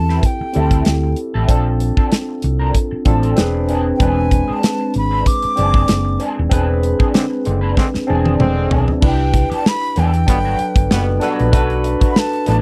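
A breathy, vibrato-tinged jazz flute carries the melody with a soft attack and lifted highs over a smooth, cinematic 1970s-style soul groove with a light swing. A barky, bright tine electric piano with overdrive and phaser, a round, dark hollow-body bass, a slightly broken-up, lo-fi guitar riff through wah, and a punchy, polished drum kit with bright cymbals fill out the band. A band accent arrives at 6.5 seconds, a tight, brilliant trombone section adds stabs from 7.1 seconds, and a drum fill at 7.8 seconds leads into a new section, all captured in a dry, close studio sound.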